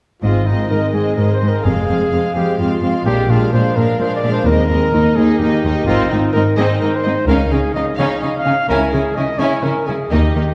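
Adventurous and triumphant, this heroic film-score excerpt moves at 127 BPM in a straight 3/4 in Ab major, with a warm, lush violin section singing the melody over a second violin line and a distant viola accompaniment, all bowed with vibrato. A clear, up-front solo trumpet adds classical-style stabs while a mellow, very quiet concert harp rings out thumb-plucked arpeggios, and a focused cello section and smooth double basses carry the bass. The ensemble sits further back on a wet scoring stage, with harmony moving from Ab through Fm and Bb7 to a closing turn from Dbadd9 to Dbm.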